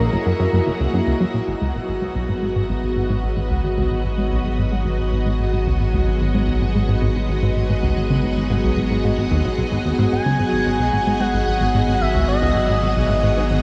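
A straight 4/4 pulse at 111 BPM carries this cosmic, hypnotic slice of sequencer-driven space music in G# minor, where a punchy, funky analog bass riff with a plucky filtered attack and delay runs beneath lush, vintage string-machine chords held up front with ensemble chorus. A pulsing, detuned gated texture sits in the background as the harmony moves from F#7 to G#m7, and a deep, round sub bass enters at 1.5 s under a moderate shimmer reverb with a long tail. A smooth, expressive synth lead with vibrato, subtle chorus and delay sings a brief phrase at the start and returns at 10.1 s, in a passage cut from a longer piece.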